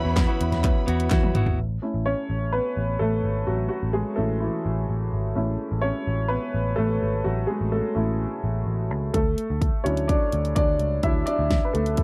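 A straight, steady 4/4 pulse drives this uplifting, anthemic piano-driven pop excerpt, where a punchy, layered electronic kit with a fat snare and crisp handclaps sitting in the background joins just after the opening beat. In that brief opening, a compressed, clean electric guitar picks a short riff, a lush, distant violin section adds a bowed second line with vibrato, and the drums close it with a fill. From 1.6 seconds the clear, woody upright piano takes a long solo, its slightly detuned tone ringing with long sustain up front. Beneath it, a dark, round, foam-muted electric bass holds the low end throughout. The kit returns at 9.1 seconds as the harmony shifts, and the whole mix stays dry and close with little reverb.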